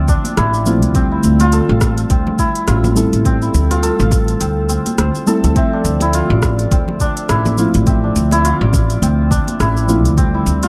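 A woody pizzicato upright bass sits up front in this mystical, earthy slice of organic downtempo, its steel strings pulsing with sidechain pumping against a soft, tape-warm electronic kick. Above it, a mellow hammered santur plays shimmering, ringing arpeggios through a digital delay, while muted felt-like synth keys add intimate, decaying chords coloured by chorus, phaser, pumping and delay. A small-room electronic kit supplies crisp hats, rim clicks and shaker with a lightly swung sixteenth-note feel, and very quiet, close and dry congas ring underneath. The harmony moves between Dm9 and Fmaj7, and the kick drops out briefly from 4.4 to 5.6 seconds before returning. Light reverb and digital ambience frame a dark production in this excerpt cut from a longer piece.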